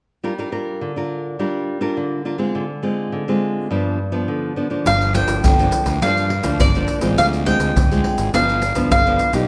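A woody, double-strung mandolin melody enters at 4.9 s over a bright, full-bodied fingerpicked nylon-string guitar that opens this lively, bittersweet samba and choro excerpt alone from 0.2 s, with audible finger squeak, cycling through Gm7, Dm7b5 and G7 in G minor at 104 BPM, as a fuzzy, overdriven fingered electric bass and a hard-handed percussion group of tube shaker, deep surdo and pandeiro join beneath at the same moment, all set in a moderate large-studio reverb.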